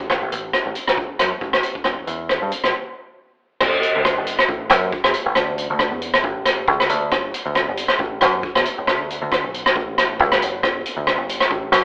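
A deep, dark picked electric bass and a vintage acoustic drum kit start together, the bass round and upfront while the kit's punchy kick, hi-hat, rim click and crash sit close with a natural, rolled-off top. This danceable, carefree highlife groove rides a lightly swung sixteenth feel, pauses for a brief break at 2.7 seconds, then moves into a new section at 3.6 seconds. The band plays live in one room with moderate studio reverb and a narrow telephone-like tone, and the clip is cut from a longer piece.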